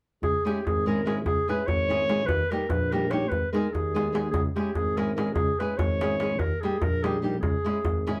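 Fiery and virtuosic, this brief Balkan wedding-band passage in 5/8 races along at 292 BPM in eighths, set in C# dorian sharp4 and moving through C#m, D# and G#m. A mellow, distant clarinet carries the melody up front in a classical style, while a fingerpicked flamenco guitar joins at 0.4 s with warm acoustic accompaniment. Beneath them, a smooth-topped tuba with light vibrato holds the bass, and a crisp, deep metal-shell darbuka is struck with hard hands, close and dry, all in a live-sounding room with a short, wet ambience.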